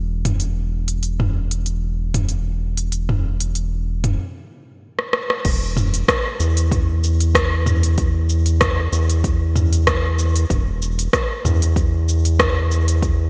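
Organic downtempo at 95 BPM in 4/4 with a light 16th-note swing, this meditative, hypnotic excerpt sets a round, dark analog bass pumping with sidechain from the start against an up-front, tape-warm electronic kit of smooth hats, rim clicks, shaker, toms and crash bathed in gated reverb, then breaks into a stop at 4.2 seconds before a drum fill leads into the second section at 5.5 seconds, where a deep electronic kick joins, all under light reverb and a bright 1980s-style digital sheen.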